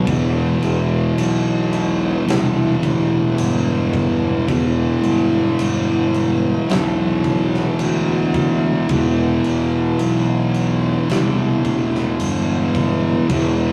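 Stoner and doom metal at a crawling 54 BPM in E minor, brooding and sludgy, this short cut from a longer piece rests entirely on an E minor chord, with two distorted fuzz guitars picking a low riff, one dark and up front, the other set back in the background. Beneath them a growly, overdriven fingered electric bass adds bright, punchy grit, while a big acoustic drum kit with a fat snare, a punchy kick and crash cymbals sounds dark and smooth in a large room. The whole take has the rough feel of a rehearsal-room recording, with moderate ambience and saturated warmth.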